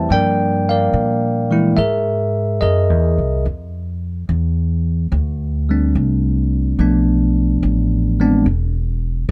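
Tender and romantic, this swung jazz ballad fragment pairs a bright, bell-like tine electric piano accompanying cleanly and directly over a Gm7, Caug7, F6 and Bm7b5 progression with a woody pizzicato upright bass on steel strings, both up front in a dark, dry mix, until the piano falls away at 8.5 seconds and the bass carries on to 9.3 seconds.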